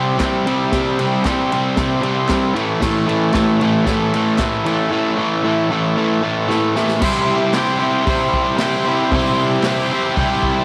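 A crunchy, double-tracked electric guitar sits up front, picking a bright, overdriven riff that carries this rowdy, swaggering garage rock excerpt from start to finish. Behind it, a buzzy vintage combo organ holds sustained overdriven chords, adding short fills around 6.0 seconds and again at the very end. A vintage acoustic drum kit with a punchy kick, a medium-tuned snare, hi-hat, ride and crash cymbals drives a straight beat, with a drum fill leading into a new section at 7.0 seconds. Hollow, band-limited group handclaps sit in the background. Light reverb and small room ambience give the whole thing a natural, live-in-the-studio feel, and the clip is cut from a longer piece.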